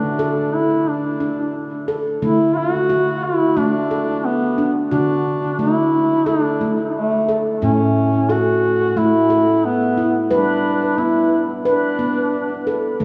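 Meditative world music, calm and gentle, in which a warm, folk-style duduk carries a smooth-topped solo melody with vibrato up front while a ringing, airy stainless-steel handpan, played with the fingertips, spins arpeggios alongside it, both parts trailed by a diffuse ambient delay within a wet cathedral reverb, the duduk falling silent at 12.6 seconds just before this fragment of a longer piece ends.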